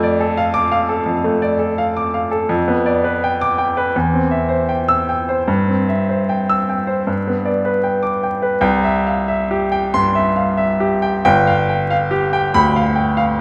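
Vinyl crackle sits beneath a polished, up-front baby grand piano, heard in a church or concert hall with a wet reverb tail of 1.3 s. This short cut from a longer romantic character piece for solo piano is in C major and moves in a flexible rubato of 74 to 95 BPM. It carries a hopeful, passionate mood, and its clear tone spans from deep bass notes to bright high ones, moving through chords such as G7/F and C/E before a new section begins at 8.6 seconds.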